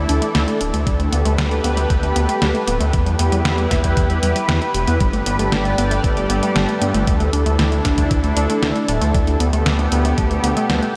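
A dreamy mix soaked in a huge ambient reverb opens this uplifting synthwave excerpt, cut from a longer piece in a straight four-four. Up front, a lush unison pad of detuned sawtooth and square waves with a sub octave holds slow-attack chords through chorus, phaser, sidechain pumping and shimmer reverb, bright on top and fading with a long release. Beneath it, a thick detuned saw bass sits forward in the mix, saturated by tube warmth and chorus, pumping with the sidechain. In the background, a warbling, lo-fi pluck plays mellow filtered arpeggios through chorus, analog delay and shimmer. A detuned 8-bit drum machine supplies hi-hat and a medium-tuned snare from 0.1 seconds, and a thumpy, sampler-style electronic kick joins at 0.9 seconds, both set in studio reverb, while the harmony drifts through Dsus2, Gadd9/D, Em and Gadd9 before returning to Dsus2 and Gadd9/D.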